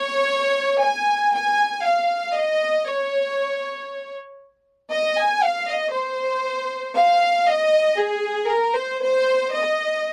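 A bowed violin section opens the recording at 0.0 s, playing alone in free time in Ab major. The ensemble sound is biting and intense, with a smooth top and light vibrato, and it sits up front in the mix. This short cut from a longer Mexican folk piece feels festive and romantic, and its melody moves between Ab4 and Ab5. The opening material returns at 7.5 s and carries through to the close at 10.1 s. Light reverb and a dark production frame the clear studio tone of the strings.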